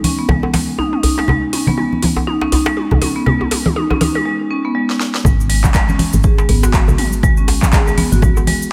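Swung sixteenths drive this earthy, hypnotic afro house excerpt, where an up-front, hard-mallet marimba arpeggio with sidechain pumping, low-pass filtering and digital delay rides over bright congas, a tight, cracking djembe and an overdriven deep house kit of handclaps, metallic hats, fat snare and toms that fills through the build-up and a short break until the drop at 5.2 seconds brings in a punchy electronic kick, a round, woody FM bass pumping in the background and a grainy cabasa, all in a small, lightly reverberant room.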